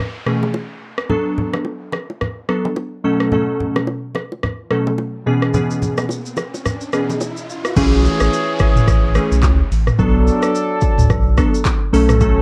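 Glassy, detuned digital keys with chorus sit up front in this mellow, hypnotic afrobeats excerpt, over an overdriven electronic drum kit with a deep kick and metallic hats, close, dry bongos and congas until 7.4 seconds, and faint electronic sound effects whose riser builds from 5.9 seconds to 7.8 seconds, where a thick, saturated sub bass and a loose, vintage-style horn section with light vibrato arrive, while the recording carries light reverb and a worn, warbling cassette-tape pitch drift.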